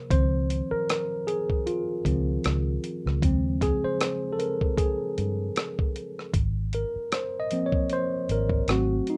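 A worn, slightly out-of-tune tine electric piano opens this smooth neo-soul R&B fragment, carrying solo lines up front over warm chords that settle on a new section at 6.3 seconds, while a dark, round, foam-muted fingered bass and a gritty, compressed sampler-style drum kit with a thumpy kick, hi-hat and rim click join at 0.1 seconds in a lightly swung groove, all captured dry in a rough home-demo mix.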